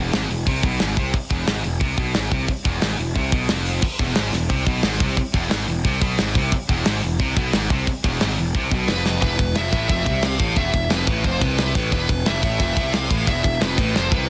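Heavy metal at 178 BPM in a dark, heavy mood, this excerpt opens with a low riff from a high-gain distorted guitar and a lo-fi, double-tracked garage guitar over a growly fuzz bass and an up-front, tight drum kit with bright cymbals, adds a very quiet second distorted guitar at 3.8 s, and brings in a high-gain lead guitar melody at 8.9 s just before a drum fill, all inside a dense, heavily limited modern master with studio reverb.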